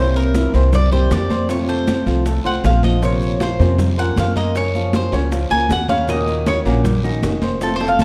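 A picked Cuban tres takes the solo melody in this sultry, danceable Cuban son and guajira excerpt at 157 BPM, its metallic double strings sitting over thumb-plucked flamenco guitar accompaniment and open, long-sustaining baby grand piano arpeggios. A woody, thumpy pizzicato upright bass with gut strings sits up front. Ringing high-tuned congas, round low-tuned bongos, raspy guiro and grainy maracas join in the background from about 0.2 s, with a drum fill at 7.6 s, all inside a moderate hall reverb and a dark, warm production.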